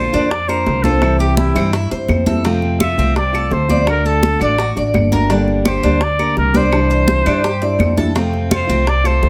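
Relaxed and danceable, this short cut from a longer Cuban son and guajira piece moves at 168 BPM in straight 4/4, in F major, with chords running from Bb through C, F, D, Gm and Cadd9 before landing back on F at 8.2 seconds. Up front, a breathy trumpet carries a whispered, intimate, pop-style solo melody between E4 and E5, its soft attack and vibrato set in plate reverb. A classical nylon-string guitar fingerpicks a warm accompaniment with fresh strings and audible finger squeak, while a Cuban tres adds bright, metallic arpeggios on its double strings, some octave-doubled. The pizzicato upright bass sits prominently in the mix, dark, growly and thumpy, with a woody tone on steel strings. From 0.1 seconds, close, dry congas with a thick skin and hard hands play alongside tight, high-tuned bongos struck with soft hands in the background, and band-limited, vintage claves join at 0.5 seconds, all in a moderate studio room.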